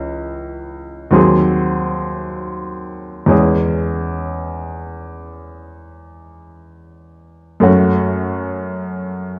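A clear, woody upright piano sits up front in a romantic nocturne in C# minor, unfolding in free time across a 9.4-second excerpt of a longer piece, its short-sustained low-to-middle voicings moving through C#m, G#7/D#, C#m/E and F#m with a mournful, yearning mood, set in a moderate recital hall reverb within a dark, warm production.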